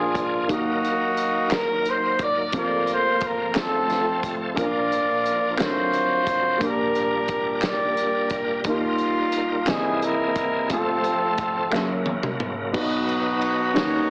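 The recording has a heavily compressed, AM-radio sound inside a moderate large studio reverb, lending this slow gospel excerpt a soulful, reverent air at 59 BPM in a straight 6/8. A tight, jazz-style horn section carries the melody from Bb3 to D5, sitting up front yet sounding distant and roomy. An upright piano, woody and vintage with short sustain, accompanies across a range from F1 to Fb5, while a bright tonewheel organ holds shouting, clean sustained chords through a slow rotary speaker and chorus vibrato, its key click audible. A modern acoustic drum kit with a fat snare, punchy kick and pumping room sound enters at 0.2 seconds and plays a fill from 11.7 to 12.7 seconds, while crisp, close group handclaps sit in the background from 1.5 to 12.0 seconds. The harmony moves from Ebm through Fsus4, F, Bb, D7alt and Gm/Bb to Eb, C7alt, F and Gb7 before landing on B as the opening section begins again near the end.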